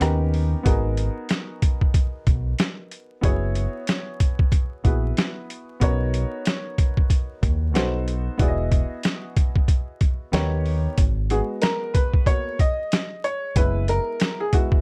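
A gritty, pitched-down boom bap kit with a thumpy kick, a round, up-front fingered electric bass and a woody, slightly detuned upright piano bathed in plate reverb open this nocturnal, mellow jazz-hop excerpt at 93 BPM in G# minor with a swung sixteenth feel, the piano moving through extended chords like G#m9 and Emaj9 over a dark, warm, vinyl-crackled production before stepping forward for a short solo at 11.0 seconds, and the bass drops out at 14.0 seconds.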